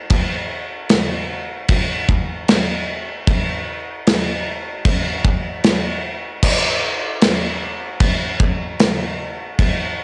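Rock in a blissful, dreamy mood, carried entirely by a loose indie drum kit that plays from 0.1 to 9.8 seconds, with crash cymbal, a medium-tuned snare and a tight kick sitting up front. The acoustic kit sounds like it's in a small, pumping room, colored by cassette tape and a light reverb, and the home recording has a dulled, soft top end. The same section comes around twice in this short cut from a longer piece.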